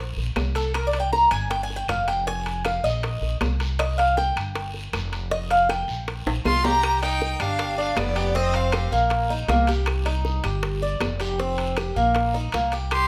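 An upright bass opens this excerpt from a longer Cuban son and guajira piece, plucked, dark and up front, and is soon joined by soft-handed, high-tuned bongos, ringing metal-shelled timbales, very quiet woody claves and a raspy, distant guiro. At 158 BPM in C minor, the groove feels nostalgic and danceable. The bright, metallic Cuban tres carries the opening section with a picked solo of arpeggios over the shifting chords, and a drum fill around 6.3 seconds leads into the next section. At 6.5 seconds a dark, bowed violin with expressive vibrato and portamento takes the melody. A brilliant, gritty, growling trumpet plays a punchy second line beneath it. Both drop out at 8.9 seconds and return only briefly at 12.9 seconds, while light reverb gives the percussion a little space.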